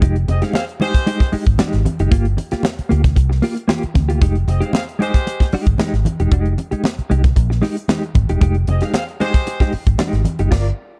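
A straight, steady four-beat funk groove opens this short excerpt, with a tight drum kit of kick, snare, hi-hat and crash sitting up front beside a vintage fingered electric bass. The kit sounds dry, airy and polished, with a high-tuned snare and a tight kick, while the foam-muted bass comes across round, dark and amped. A clean, compressed electric guitar supplies picked accompaniment treated with tremolo, circling Fm9 and Gm7 chords under a cool, hypnotic mood. A clear horn section, distant and roomy with a light vibrato, adds brief pop-style ensemble lines at 0.3, 4.5 and 8.7 seconds, and bright congas with a thin skin, played with soft hands, tap along in the background. The small room ambience gives the whole a dark, warm finish, and the band hits a closing accent at 10.5 seconds.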